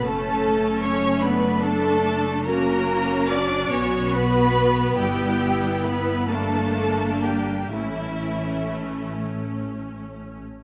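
The viola section stands out in this short passage from a slow, romantic movement for string orchestra. Its rich, even tone sits up front as it carries the accompaniment and lingers until 10.5 s. Above it, the first violins sing a lyrical melody with a focused, smooth-topped sound, while the second violins trace a lower line of similar lushness. Cellos and double basses share the bass, the cellos smooth and the basses woody; the cellos and both violin sections fall away together at 9.2 s. All five sections play with vibrato, and the music moves in a rubato 6/8 at roughly 40-51 dotted-quarter beats per minute in D major. The harmony passes from D/F# through F#, B5 and G to a darkening G minor before settling on A, all within a moderate concert-hall reverb.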